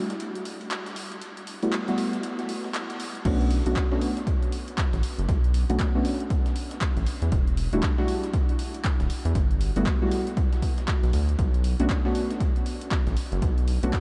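A rubbery, hollow square bass and a punchy, up-front electronic kick arrive around the drop at 3.3 seconds in this moody, late-night deep house cut from a longer piece in B minor at 118 BPM with a swung 16th feel. They follow a short build-up where a deep, full-bodied chord stab with chorus, sidechain pumping and analog delay moves through a filter sweep over tape-warm analog drum-machine claps, hi-hats and crash. A gritty, very quiet sampler-style soul kit adds hi-hat and snare, and a huge ambient reverb soaks the whole mix in a dreamy haze.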